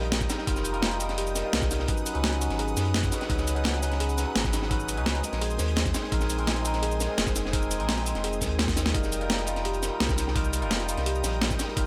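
Lush and soulful, this short cut from a longer liquid drum and bass piece moves at 170 BPM in F minor, with a straight 4/4 feel. A deep, round sub bass sits up front beneath a bright, barky electric piano overdriven through a combo amp, treated with phaser and dub echo. A thick, airy unison pad built from detuned sawtooth and square waves with a noise layer holds soft-attack chords in the background with chorus, while a woody, mellow kalimba rings out arpeggios with its own dub echo. The drums layer a gritty, compressed, up-front sampler-style breakbeat kit with hi-hat, shaker and a medium-tuned snare, a thumpy electronic kick, and a darker, saturated acoustic breakbeat kit sitting in the background with a rolled-off top and high-pass filtering. The harmony drifts through F9sus4, Db9sus4 and Bb9sus4 before returning to F9sus4, with a drum fill at 8.7 seconds, all under a light reverb.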